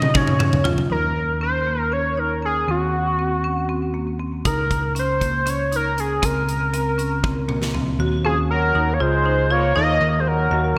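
Progressive instrumental band music in a brooding, intricate 7/8, cut from a longer piece, where a hollow, sawtooth-edged synth lead with an added fifth carries the melody over woody, close-miked marimba arpeggios with digital delay and a picked electric bass that sits up front. A huge arena drum kit with a fat snare and gated reverb opens with a fill alongside a faint, boxy baby grand piano, then returns at 4.5 seconds with another fill around 7.2 seconds. From 8.2 seconds a brilliant, distant trombone adds a second line, all within a lush hall and a bright 1980s-style digital sheen.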